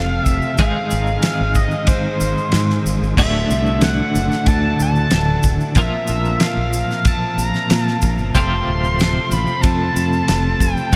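A screaming, distorted synth lead with warbling vibrato and diffuse delay carries the melody over a twangy, tremolo-washed twelve-string electric guitar riff, bright fingered bass, a slow-rotary tonewheel organ in the background, a damped 70s kit with a fat snare and dark cymbals entering at 0.3 seconds alongside grainy, distant maracas, all in this hypnotic, hazy psychedelic rock excerpt at 93 BPM, moving through F, G#, D and Bbsus2 in a dreamy mix soaked in huge ambient reverb.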